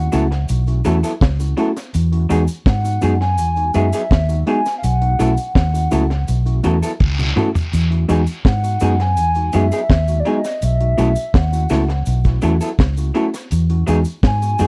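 A round, punchy, foam-muted electric bass sits up front in this tender, romantic lovers rock reggae cut, its dark, amped tone anchoring a gentle alternation between B7sus4 and Emaj9 chords. Beside it, a deep acoustic drum kit with a high-tuned snare, tight kick and rolled-off top carries the straight 4/4 groove on hi-hat, kick, snare and toms, with tape echo and a drum fill from 7.0 to 7.7 seconds. A hollow, woody synth lead with a clarinet-like quality sings the melody, softly sustained with vibrato, chorus and tape echo. Underneath, a mellow, clean tine electric piano, heard through its built-in speakers, adds echoed accompaniment, while an electric guitar through a small old amp plays slightly broken-up, lo-fi, compressed stabs. Cabasa and guiro sit distant and faint as if in a large room, with touches of tube shaker and group handclap, all within a dry, close 1970s-style studio sound that is cut from a longer piece.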